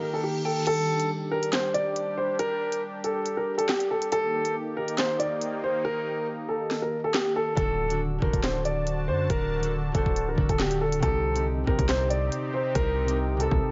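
Dark and menacing, this drill-style hip hop excerpt moves at 139 BPM with a half-time feel in G harmonic minor, led by an up-front, mellow, vintage-toned grand piano melody over a sustained, detuned sawtooth pad, while fingerpicked, ringing harp accompaniment drops out at 2.7 seconds and returns at 7.5 seconds. A reverse cymbal and a hollow, bouncy square-wave pluck open the piece before electronic drill drums enter at 0.7 seconds with sharp snare, crisp hats, handclaps and crash, the knocking kick held back until 7.6 seconds, when a punchy, heavy 808-style bass also drops in. The chords shift from Eb through Gsus2 to D and Cm under light reverb and a digital ambience.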